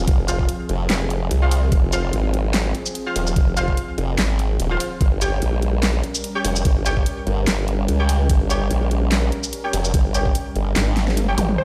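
Heavy wobble dubstep at 146 BPM in a swung half-time feel, menacing and aggressive, cut from a longer piece and sitting entirely in the drop over Fm moving to Gdim at 5.0 seconds. Two overdriven, chorused formant-sweep wobble basses snarl up front with sawtooth and sine grit, beside a knocking overdriven electronic kick and a layered dubstep kit of huge snare, handclaps, hi-hat, shaker and toms that rolls into a drum fill from 10.8 seconds. Behind them a lush, evolving supersaw pad pumps under sidechain and a low-pass filter, bold ring-modulated orchestra-hit-like stabs ring with reverb and digital delay, and a closing zap and impact lead to a single punchy detuned unison pluck at 11.6 seconds, all played through a big sound system in a bare stone room.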